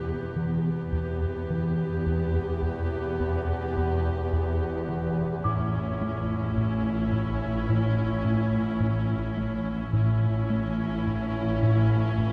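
Heard from further back in a wet scoring-stage space with a long 1.9-second reverb tail and a dulled top end, this mysterious, tense cinematic suspense cue moves at a slow 53 BPM in 4/4, shifting from E minor to A at 5.4 seconds. A rubbery, hollow square-wave bass carries a dark, bouncy riff over bowed cello and very quiet double bass sections. A swarming, nasal, detuned drone with its own reverb evolves in the background, while a vibrato-rich viola section supplies focused accompaniment and a delicate, bell-like celesta adds sweet high texture.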